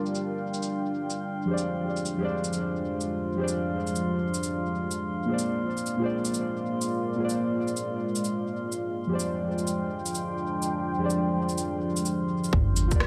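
Muted, felt-like synth keys with tape echo and sidechain pumping accompany this wistful, melancholic future garage excerpt at 126 BPM in F dorian, alongside a deep, moody pad and a drifting glass-harmonics texture, with tape-warm, filtered shaker, cabasa and rim click, before a tight kick, soft round dub sub bass and a very quiet sub drop land together at 12.5 seconds in an echo-heavy spring-reverb mix.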